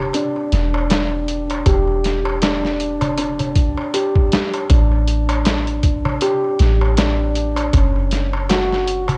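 Brooding and cinematic, this trip hop fragment at 79 BPM in E minor sets a felt-muted upright piano's dark, intimate arpeggios, roughened by vintage 12-bit sampler grit and digital delay, over a deep, round 808-style bass, a compressed, pitched-down sampler drum kit with a thumpy kick, and a crisp metal-shell darbuka heard distantly in a large room, all colored by worn cassette tape with warbly pitch drift as the harmony moves from Em7 to A7sus4 to F#5.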